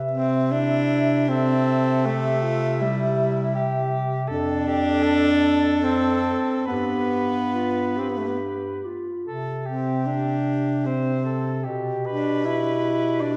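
Tender and serene, this lyrical classical fragment for single-reed quartet moves in an unhurried 3/4 at 68-82 BPM with a flexible, rubato feel in C major, drifting from C through F and G before settling on G/B. The soprano saxophone carries the melody from 0.5 s with a light vibrato, sounding distant and roomy. The soft-attacked, smooth-topped clarinet sings a second line above the up-front tenor saxophone's accompaniment and the vintage-toned bass clarinet's foundation. A generous concert-hall reverb wraps the ensemble in a glowing, spacious sound.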